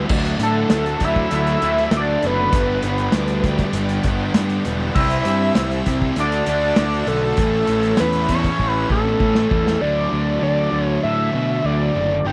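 A thick, double-tracked fuzz guitar riff and an overdriven, up-front picked bass open this upbeat, jangly indie rock excerpt at 99 BPM in D major, over phased, ensemble-chorused string-machine cellos sustaining chords in the background, joined almost at once by a dark, punchy vintage drum kit, then at 0.4 s by a screaming, gritty synth lead melody with chorus, vibrato and slapback echo and a bright, smooth-topped classical clarinet second line, before a drum fill from 8.6 s leads into a new section at 9.8 s, where the guitar, bass and synth lead carry on after the clarinet, drums and strings have finished.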